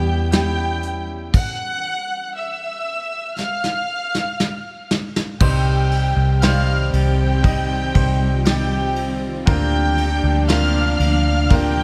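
Melancholic and longing, this slow 59 BPM pop ballad excerpt in 4/4 pairs a dark, woody, lush violin section melody with a mellow French horn section in the background, clear polished baby grand piano, a very quiet granular cloud pad, a round, foam-muted vintage electric bass up front and a soft brush drum kit with dark cymbals, all in a small room, as a stop from 1.3 s gives way to a drum fill before settling into C minor at 5.4 s.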